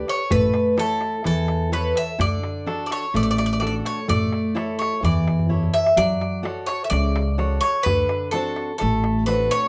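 A bright, metallic bouzouki carries the melody up front, its doubled strings ringing with some octave-doubled courses in this uplifting, joyful Greek folk band excerpt. A full-bodied fingerpicked jumbo acoustic guitar sits close beside it with audible finger squeak, while a woody pizzicato upright bass on steel strings anchors the harmony as it moves from A to D, F#m and D7. A deep, dry clay darbuka played with hard hands drives the straight groove and breaks into a fill from 5.4 s to 6.0 s, all set in a moderate studio reverb.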